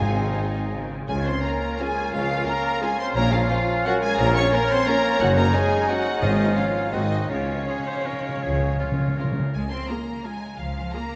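A lush symphonic violin section carries the melody of this sweeping, elegant classical passage in Db major, its focused, vibrato-rich tone singing over a full orchestra in a rubato 3/4 that moves between 151 and 190 BPM. Beneath it, a very quiet, close violin section, a clear oboe, a pure flute and a dark, distant clarinet weave second lines, while a smooth chamber viola section and a background bassoon fill in the accompaniment. Mellow French horns hold sustained chords, and the bass is grounded by a roomy tuba, an even double bass section and a focused cello section. Round, soft-mallet timpani sound at the opening, return at 6.2 seconds and play a fill that begins on the Db chord at 7.3 seconds and runs to 9.5 seconds. The winds, horns, tuba and timpani fall away by 9.5 seconds as a brief new section begins, leaving the strings to carry on. A wet cathedral reverb places the orchestra in a vast, echoing space, and the passage is cut from a longer piece.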